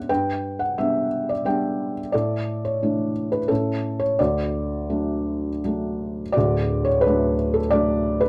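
A soft, intimate recording with light reverb places a felt-muted upright piano up front, its mellow tone carrying audible action noise. This short, lyrical classical solo piece in 3/4 moves with a relaxed, rubato feel, spanning D1 to G5 as the harmony passes from G through Asus4 and A to settle on D at 4.2 seconds. The hopeful phrase then begins again at 6.4 seconds before the cut ends at 8.3 seconds.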